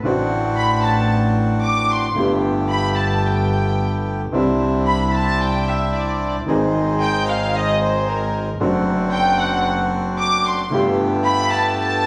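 Drenched in a wet, large studio reverb that captures the band playing live in one room, this melancholic, dramatic tango fragment moves at 112 BPM in a rubato 4/4, with a woody, boxy upright piano accompanying, a dark, reedy bandoneon jabbing out up-front stabs, a bowed double bass with gut-string tone and light vibrato holding the low end until 10.6 s, and a smooth-topped, period-style bowed violin section carrying the solo line from 0.6 s over chords that move from D7/A through Gadd9, Cadd9 and Ab.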